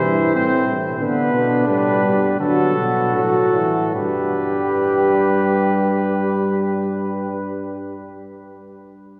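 Heard from further back in a cathedral's long, wet reverb, this lively, joyful classical canzona for brass ensemble sets a mellow trumpet melody over a close-miked flugelhorn second line with light vibrato, a vintage-toned trombone accompaniment and an up-front, warm bass trombone, the imitative parts slowing down through the first 3.9 seconds as the harmony moves from Am through G and D before settling on G in this excerpt cut from a longer piece.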